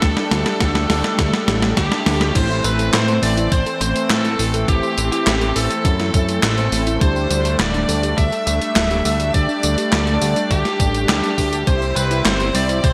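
Synthwave at 103 BPM in A minor, moody and nostalgic, heard as a short section cut from a longer piece. It opens on a drum fill over a Dsus4 chord before settling at 2.4 seconds onto Am, then returning to Dsus4 and closing on C. An overdriven, biting electric lead guitar carries the melody with digital delay, shadowed by a very quiet, shimmering string machine of violins in the same range. Underneath sit a bold, brassy analog pad with chorus and sidechain pumping in the background, a round, tine-like thumb-piano synth pluck playing soft arpeggios, and dark synth brass stabs with chorus and delay. A fat, saturated analog bass sits up front with a thumpy electronic kick, while a gated 80s drum machine supplies snare, handclaps, hi-hat, tambourine and crash, its snare wrapped in gated reverb. The bright 1980s-style digital production places it all in a lush hall ambience.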